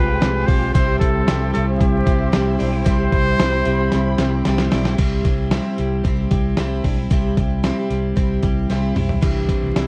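Worn, warbling cassette-tape sound with vinyl crackle and a small-room haze frames this breezy, youthful jangly indie pop clip in C major at 113 BPM, where a clear, close-miked trumpet sings the melody up to 4.4 seconds over bright, twangy twelve-string electric guitar arpeggios, a shimmering picked twelve-string acoustic, a reedy heavy-vibrato combo organ and a very quiet, lush string section that both stop at 5.0 seconds, all anchored by a dark, foam-muted fingered bass and an up-front, gritty sampler-style drum kit whose fills mark the section changes.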